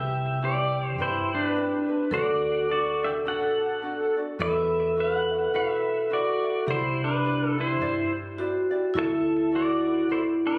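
Captured on a phone in the room, this short cut from a longer piece has a small-room ambience with light reverb, a club reverb and compression. It is a languid, dreamy Hawaiian tune at 105 BPM in 4/4, with a 59% swing on the eighths. Up front, a clean electric pedal steel guitar carries the melody, played with fingerpicks and slide, using volume swells and a tape echo on its compressed tone. Beside it, a vibraphone struck with medium hard mallets and its motor off plays a second line, sounding metallic, ringing, dark and smooth. Deeper in the background, a light, warm fingerpicked ukulele provides accompaniment, while a round, punchy, amped hollow-body short-scale electric bass, played with a pick, holds the low end. The harmony moves through Cmaj7, D, Esus2, Cadd9 and Dadd9 across the 10.6 seconds.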